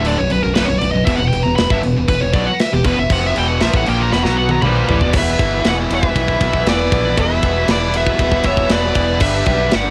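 A straight 4/4 pulse at 118 BPM drives this epic, heavy metal excerpt, where a tight, up-front drum kit and a growly, punchy fingered bass anchor bright, picked rhythm guitars (one double-tracked and overdriven, others high-gain) riffing on Bm and E5, while a dark, distorted lead guitar solos up front over very quiet, lush bowed strings until a drum fill at 4.1 seconds. A background lead line with analog delay enters at 4.7 seconds, just before the fill leads into a second section on Em, all with a cassette-tape home-recording character and light reverb.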